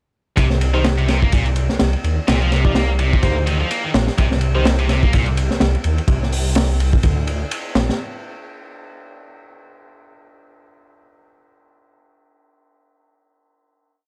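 A crunchy, looped breakbeat with edits swings at 126 BPM in C minor, its tight kick, high-tuned snare, hi-hat and dark ride cymbal up front beside a thick, menacing detuned saw bass of long gliding notes, while a bright, distorted high-gain guitar riff with delay repeats a 32-step sequence until 5.2 seconds and a worn, slightly out-of-tune tine electric piano adds sparse, lightly overdriven echoing chord stabs in the background, giving this swaggering, energetic piece a dark, gritty drop throughout.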